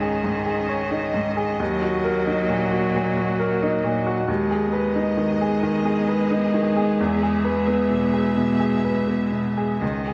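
Neoclassical piano and strings, this passage cut from a longer piece feels fragile and reflective, moving in 4/4 with a rubato feel. A baby grand piano sits up front as accompaniment, its tone clear and intimate with long sustain and audible action noise that lends it a natural, close presence. A single bowed cello carries a second line, rich and even with vibrato, set at a distance. A studio string section holds sustained chords with soft attacks and vibrato, lush and expressive, its upper register smooth. The harmony moves from C#sus2 through D#m and G#m/D# to E at 7.0 seconds, and a moderate recital hall reverb surrounds the ensemble.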